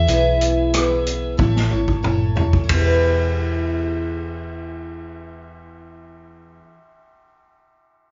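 An overdriven slide guitar with a dark edge opens this short folk rock and heartland rock excerpt, taking a solo that sounds until 1.7 seconds. It plays over a shimmering, octave-doubled twelve-string acoustic guitar with fresh strings and a round, amped hollow-body short-scale bass, at a straight 92 BPM in E major. A vintage drum kit with a punchy kick, medium-tuned snare and dark cymbals sits up front and plays a fill from 1.4 to 2.7 seconds as the chords move from E to A and back to E, all in one live room with light reverb and an open-road, warm mood.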